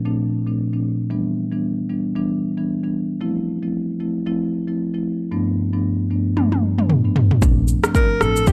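Afrobeats at 114 BPM in 4/4, with a 16th-note swing and a sunny, breezy mood, heard in a short cut from a longer piece. A marimba played with soft mallets opens alone, its rosewood bars sounding mellow, round and close-miked as it carries the chords from Bbmaj7 through Em7, Fmaj7 and G7. A layered electronic deep house kit arrives at 6.4 seconds with a drum fill of kick, rim click, shaker and toms, its deep kick sitting up front. At 7.4 seconds the harmony returns to Bbmaj7 and a pizzicato upright bass enters low, woody and thumpy with a dark steel-string tone. A pop-style alto saxophone takes the solo melody at 8.0 seconds, warm with vibrato and placed up front. The sound is dry and gritty, with transformer saturation and a cassette-tape character and little reverb.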